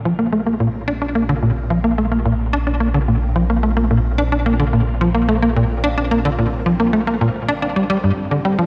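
A dark, warm hall-reverberant excerpt of luminous, expansive sequencer-driven space music in Bb major at 109 BPM, where a tight, punchy sawtooth sequencer bass with ring modulation, filter pluck and tape echo drives its riff up front from 0.1 seconds, a nasal, detuned analog drone with pulse-width modulation and chorus holds a mellow, evolving low bass from 0.5 seconds, and a swirling, bright phased string machine fades in behind them with soft sustained chords from the start, the harmony shifting from Bb to G7(no3) at 7.8 seconds.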